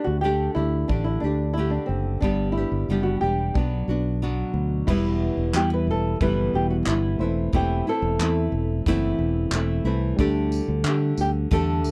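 Dry and close, this recording has the intimate feel of a 1970s studio session, with little reverb around the instruments. It is a reflective, wistful stretch of acoustic pop cut from a longer piece, in a straight 4/4. A full-bodied, fingerpicked nylon-string guitar carries the classical-style accompaniment up front, while a dark, thumb-plucked flamenco guitar sings the melody in a narrow middle register. A round, punchy fingered electric bass sits prominently beneath them, and a loose indie drum kit joins at 0.9 seconds with a tight kick, dusky cymbals, handclaps, tambourine and crash, its top end rolled off in a small-room sound. At 4.9 seconds, as the harmony moves to Em, a very quiet, reedy electric piano with a barky, lightly overdriven bite adds a thin layer of colour through its built-in speakers.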